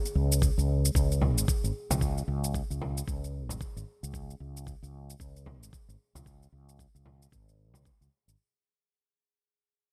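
A swung sixteenth-note groove in 4/4 drives this earthy organic downtempo excerpt, which fades out across its full 8.4 seconds: a knocking electronic kick captured in a large room and a round, punchy fretless electric bass sit up front, a layered, overdriven electronic shaker runs beneath them, a deep acoustic frame drum played with hard hands joins at 1.2 seconds, and a ringing bronze singing bowl with slow metallic beating hums meditatively in the background, all set in a bright 1980s-style digital ambience.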